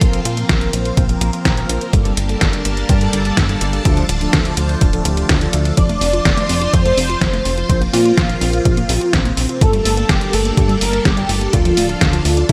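Italo disco at 125 BPM, playful and romantic, this excerpt opens with a swirling, phased string machine, dark chorused brass stabs that drop out at 5.7 s, a saturated pulse-wave synth bass, a punchy tape-toned electronic kick and an up-front 8-bit drum machine on hi-hat and snare, before a thick, bold unison lead melody with vibrato and a warbling lo-fi pluck arpeggio enter at 5.8 s over a Bbsus2, Gmadd9, Dm and F progression in a lightly reverberant space.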